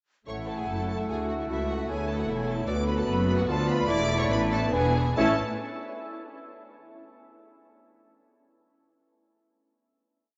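A graceful, lively classical-period movement for symphony orchestra opens at 0.3 s in A major, moving quickly in 3/4 at 132-154 BPM with a rubato feel. A clear, focused chamber violin section carries the melody, while a second, rich and smooth violin section sits in the background doubling the tune in unison and at the octave. An airy flute section with crisp attacks adds a counter-melody and sustained chords, joined by a bright clarinet and a bassoon holding chords of their own. A dark, tight French horn section sustains harmony beneath, as a rich viola section weaves independent inner lines. Underneath, an intense, up-front double bass section doubles the bass line of the symphonic cellos, which move between walking and sustained bass through a cadence from E7sus4 to E7 before the final A chord at 5.2 s, all bathed in the wet reverb of a vast, echoing cathedral.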